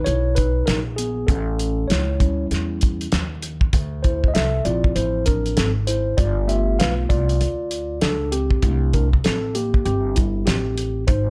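A 98 BPM groove in 4/4 with a 64% swing on the sixteenths sets up this cool, smoky jazz-hop cut from a longer piece, carried by a cloth-damped, thuddy drum kit with a fat snare, tight kick, hi-hat and rolled-off top, sitting up front in a small room. A woody, growly pizzicato upright bass sits up front beneath a mellow, clean tine electric piano that takes a solo across the whole 11.3 seconds. The piano moves through Emaj7, A7, Dm9, G7 and C6 in a studio ambience.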